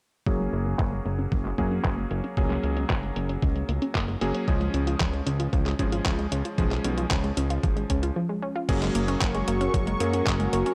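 A dry, gritty hardware sound with transformer saturation frames this playful, sunny italo disco excerpt in F# major at 114 BPM, where a thumpy electronic kick and a detuned 8-bit drum machine with crash, handclaps and low-pass-filtered hats carry a straight 4/4 under a fat, detuned sawtooth bass that sits up front. A lush, punchy unison pluck spins arpeggios through tape echo while a clear, clangy electric grand piano adds filtered stabs, with filter sweeps on the drums, arpeggio and piano running until 8.7 seconds and a break arriving at 8.2 seconds. At 8.7 seconds the music returns to F#add9, and at 8.9 seconds a smooth, mellow analog pad with chorus joins on sustained chords.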